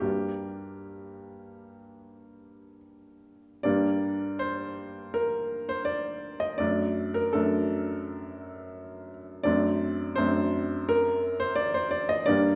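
A brilliant, up-front baby grand piano plays alone through this bittersweet, brooding romantic character piece in 4/4, spanning F#2 to Eb5 with a free rubato feel, moving from G minor harmony to D/F# at 6.6 seconds and D7/F# at 9.5 seconds, all set in a wet recital-hall reverb with a touch of small-room ambience in this brief excerpt from a longer work.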